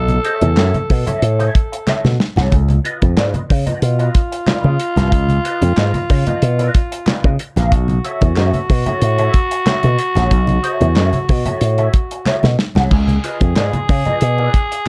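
This short funk excerpt has a dark production with light reverb, moving at 92 BPM in a straight 4/4 with an energetic, funky mood. Up front, a growly, punchy slap bass with an envelope filter carries the low end from the start, alongside a dry, damped 70s drum kit with a tight kick, medium-tuned snare and dark cymbals, which plays fills at 1.9 seconds and 12.3 seconds. A raspy, gritty tenor saxophone plays a second line in a plate reverb, while an electric guitar through a small old amp adds slightly broken-up, lo-fi accompaniment with wah, ensemble chorus and plate reverb. In the background, thin-skinned, low-tuned congas and hollow, band-limited group handclaps fill out the groove, the claps entering at 0.6 seconds. The harmony shifts between Cb9sus4 and Db9 chords.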